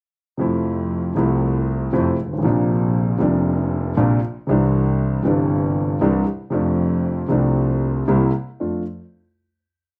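Recorded outdoors with only a light touch of reverb, this short, complete tango in F major moves at a rubato 117 BPM with an elegant, playful mood. A dark, mellow concert grand sits up front, intimate and a little vintage, with its action noise audible and deep bass anchoring the chords from Fmaj7 through Bbadd9 and Cadd9. A single bowed double bass plays alongside it from 0.4 seconds, biting and intense with vibrato and a smooth top, as both parts share the tango pulse of uneven groups of three and two eighths before a closing F6 chord at 8.6 seconds.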